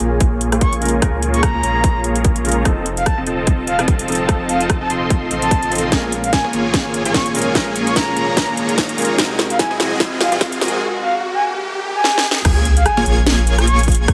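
A huge, detuned supersaw riff sits up front under a long filter sweep, pumping against an overdriven, hard-clipped electronic kick and a trap kit with a sharp snare and metallic hats through a euphoric, playful future bass build-up with a swung half-time feel. A breathy, flute-like synth lead carries the melody with chorus, vibrato and 12-bit grit, over a deep saturated sub bass, a soft felt-muted upright piano in the background, and a very quiet riser and sub drop, all bathed in a lush hall reverb. Drum fills lead into the drop at 12.4 s, where the piano stops and a dreamy, bright arpeggiated lead with a cassette tint enters in the background.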